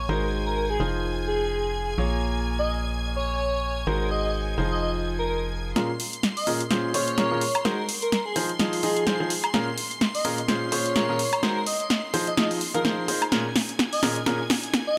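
A swung 127 BPM groove in 4/4 drives this soulful, bittersweet piano house in Bb minor, cycling through Ab7, Fm7 and Bbm7 under light reverb and digital ambience. A bright baby grand piano riff sits up front beside an airy, dreamy sine lead with chorus and dub echo, while a rich, bowed violin section holds high sustained chords and a hollow, organ-like FM bass plays until 5.7 s. From 5.8 s a punchy, layered, tape-warm house kit with warm hats and woodblock enters for a drum-fill build-up, as a filter sweep runs over the piano.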